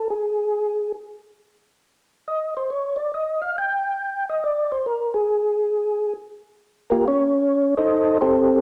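Jazz with a greasy, bluesy mood at a swung 138 BPM in 4/4, this short cut from a longer piece features a soft, flute-like percussive tonewheel organ playing solo up front from Bb3 to G5, its clean tone colored by second-harmonic percussion, chorus vibrato and a slow rotary speaker, set in a moderate large-studio reverb before landing on a Cm6 chord at 7.9 seconds.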